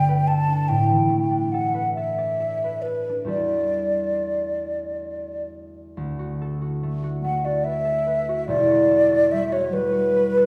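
Dreamy and pastoral, this impressionist classical duo drifts in a rubato 6/8 at about 44-49 BPM in dotted quarters, in D major, tuned to A4 = 438 Hz, and is cut from a longer piece. An airy, hollow concert flute carries the melody between B4 and A5 with vibrato and tongued notes, while a thumb-plucked, ringing concert harp spans E1 to D5 underneath; both sit up front, though the wet recital hall places the listener further back in the room. Gadd9, A11 and Em11 colour the opening, and at 6.0 s a new section begins on D69 before returning to Em11 at 8.5 s.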